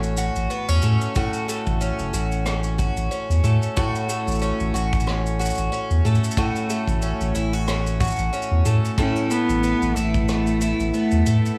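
A bright, shimmering twelve-string acoustic guitar picks octave-doubled arpeggios up front, with audible finger squeak, over a deep, round sub bass and a soft shaker and rim click in this playful, pastoral folktronica piece at 92 BPM in A major, with a gentle 16th-note swing. A tight, airy kick joins at 1.2 seconds. At 9.0 seconds a rich, close bowed cello enters with smooth vibrato as the harmony moves from A6 to Esus4/A, with the guitar and cello both carrying plate reverb and tape echo.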